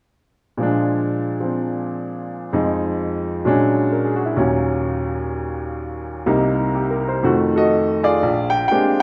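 Solo jazz with a sophisticated, playful air, this short passage, cut from a longer piece, features an upright piano alone from 0.6 to 9.0 seconds, moving with a swung lilt loosened by rubato. The piano sounds woody and vintage, sitting up front with long sustain as it travels through altered dominant and minor seventh harmonies before settling on a rich thirteenth chord at 8.2 seconds. A moderate reverb places it in a church or concert hall, lending the notes a gentle halo.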